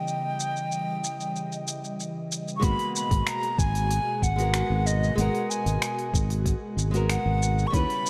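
Smooth and relaxed, this sunset chillout piece moves at 94 BPM in G# minor, with a bright, up-front baroque flute carrying the tongued, slightly unsteady melody with vibrato over a small, fingerpicked nylon-string guitar touched with delay and a breathy, detuned pad shimmering with chorus and phaser. An overdriven R&B kit of finger snaps, crisp hi-hat and shaker ticks along from 0.1 seconds, and at 2.6 seconds the harmony settles from a tense D#7b9b13 onto G#m9 as a growly, sustaining fretless electric bass and a soft, overdriven electronic kick enter. Light reverb gives the short excerpt a gentle sense of space.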